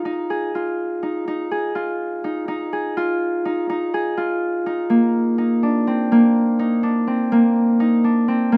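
A solo Celtic harp carries this short contemporary instrumental piece, its acoustic, fingerpicked strings ringing up front in a warm, close tone. The mood is urgent yet pensive, set in an uneven 5/8 metre with a straight feel at 248 BPM, counted in eighths. The harp stays within a compact range from Bb3 to Ab4, opening over an Ab5 chord before the harmony shifts to Bbadd9 at 4.9 seconds. Close, detailed microphones capture the instrument, while a moderate recital hall reverb adds a sense of space around it. The passage is cut from a longer piece and runs just 8.6 seconds.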